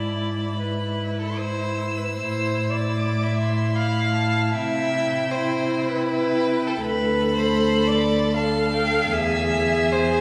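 Bathed in a long, wet church reverb, this elegiac, melancholic excerpt from a slow romantic movement for string quartet unfolds in a rubato 3/4: a distant, rich first violin sings the high melody with smooth vibrato over a warm, up-front second violin line and a close viola accompaniment, while an intimate cello bass, played sul tasto with light vibrato, soft attacks and an airy bow, anchors all four bowed parts from 0.0 to 10.2 seconds.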